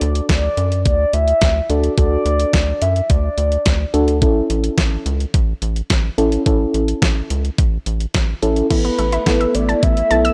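The recording is dry and gritty, with a hardware saturation that gives this melancholic yet driving synth-pop passage a rough edge. A thumpy, sampler-style drum machine sits up front with a fat snare, hi-hat and crash cymbal, joined by a rubbery, bouncy square-wave bass and a round, warbling FM electric piano that carries the chords through tremolo and chorus. A dark, horn-like synth lead with vibrato and a sub octave sings the melody at the start, falls away at 3.9 seconds, and returns at 8.7 seconds. At that point a silky string machine enters softly in the background, treated with phaser and ensemble chorus. An analog pluck also joins there with bright, wave-folded arpeggios, lifting the close of this short passage cut from a longer piece.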